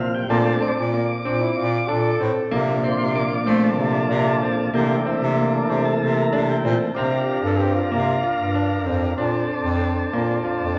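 Progressive instrumental music in 7/8 with a straight feel, this driving, intricate passage is cut from a longer piece. A smooth tonewheel organ sits up front through a slow rotary speaker with vibrato, carrying the lead until 7.0 seconds before settling into accompaniment. Beneath it, a worn concert grand piano with deep bass lays down arpeggios, and a close-miked bass clarinet in classical style holds the low line from 0.3 seconds, prominent in the mix. A clear trombone adds a second line in brief phrases, returning at 7.0 seconds as the second section begins. The harmony moves between major-seventh, suspended and thirteenth colours, and the whole ensemble sits in the lush reverberation of a church or concert hall.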